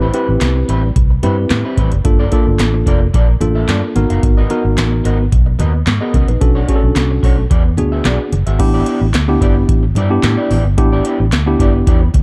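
Early-eighties boogie funk with a slick, funky, dark production, where a booming, overdriven analog drum machine with a deep kick, crisp snare, handclaps and metallic hats sits up front beside a round, punchy, foam-muted fingered bass, while a worn, slightly out-of-tune tine electric piano plays mellow chords from Am9 through Gm9 and E9, an electric guitar with subtle chorus picks a slightly broken-up lo-fi riff, and very quiet low-tuned congas join at 0.4 seconds in this short cut from a longer piece.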